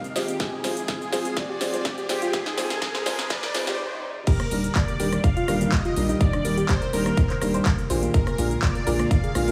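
This emotional, bittersweet progressive house excerpt opens mid-build with a smooth, detuned supersaw melody trailing dub echo, a breathy background pad and a gentle arpeggiated pluck, each filter-swept, while a big-room kit with metallic hats and a punchy snare plays a fill over a faint electronic riser. Thick-felt upright piano stabs, intimate with audible action noise, and an up-front layered electronic kick join within the first second, moving through Fm. After a brief stop, the drop lands at 4.3 seconds on Ebmaj7, a deep, nasal analog bass enters at 4.5 seconds under sidechain pumping, and the harmony shifts to Bb7 near the end.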